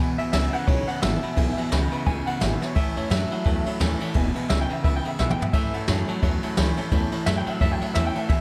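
A twangy electric guitar through a small old amp carries the solo melody from 0.2 seconds, its bright, slightly broken-up tone trailed by analog delay in this rollicking, retro rockabilly excerpt with a swung feel. Beneath it, a second electric guitar at the edge of break-up plays a low, scooped riff, while a pizzicato upright bass with gut strings gives a thumpy, woody bottom end. A jazz kit played with brushes sits up front, pairing a boomy kick and dark cymbals with a medium-tuned snare, and drops in a short fill at 5.2 seconds. In the background, a full-bodied dreadnought acoustic guitar is picked with audible finger squeak, and a detuned, jangly honky-tonk upright piano adds short-sustain accompaniment up high. The harmony moves between E and A, and a studio reverb wraps the band in a studio room sound.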